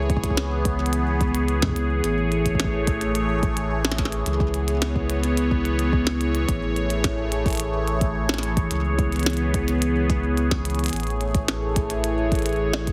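Playful yet wistful, this IDM passage rests on a bright, swirling analog pad of detuned sawtooth chords, thickened by phaser and chorus and sitting up front as it alternates between C#m7 and Amaj7. Beneath it, a round sine sub bass holds the low end, while a deep electronic kick and a glitchy kit of clicky hats, percussion blips and a tiny snare, touched with digital delay, keep a straight 4/4 pulse. A drum fill arrives at 10.7 seconds, and the whole mix carries a moderate plate reverb and a heavily compressed, radio-like sound.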